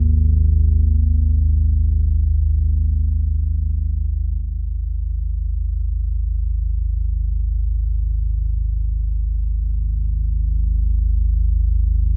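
Ambient in free time, this dark, ominous fragment from a longer piece rests entirely on a single deep rumbling drone that plays solo from 0.0 to 12.2 s, sitting low between G#1 and D#2 with a detuned, wave-folded blend of triangle and sawtooth tones. Its slow attack, long sustain and long release give it a looming, heavy presence, and it sits up front, colored by its own built-in reverb and a tape echo. The production is dark and warm with little room ambience, and the whole passage rests on a G#5 chord from the start, shifting into a second section at 4.4 s.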